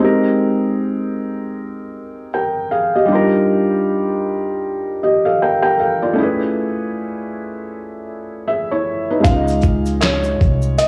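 A felt-muted upright piano opens this cosy, mellow lo-fi hip hop excerpt alone, laying soft, muted chords through cassette tape and a low-pass filter at 78 BPM in 4/4, with a 60% swing on the sixteenths and a Db lydian colour. The harmony moves from Abmaj9 to Ebmaj9, then Amaj9, before settling on Dbmaj9 at 9.2 seconds. A second, quieter piano line enters at 8.5 seconds with a brief, intimate melody in a narrow upper range. At 9.2 seconds a boom bap sampler-style kit arrives up front, pitched down and gritty with a thumpy kick, medium-tuned snare, handclaps, hi-hat and shaker, carrying vintage 12-bit sampler grit. Alongside it comes a woody, dark pizzicato upright bass on gut strings, and a grainy, bright tube shaker sits far back in the mix. Moderate spring reverb, a small room ambience, cassette tape colour and faint mains hum give the whole clip a homely, lived-in feel.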